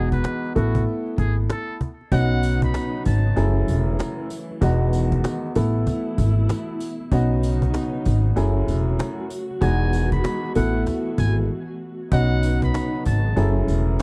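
Boom-bap hip-hop at 96 BPM with a swung 16th-note feel in B mixolydian, this confident, warm fragment rests on an up-front upright piano with long sustain, a growly, thumpy pizzicato upright bass and a woody, close cajon with faint snares. A buzzy, breathy muted trumpet with light vibrato and scooped notes plays a jazz-style solo melody through tape echo, dropping out and returning at 9.6 seconds. Soft-attack sul tasto strings in the background and quiet, jingly sleigh bells join at 2.1 seconds, and a brief break arrives at 11.5 seconds in a dark production with light reverb.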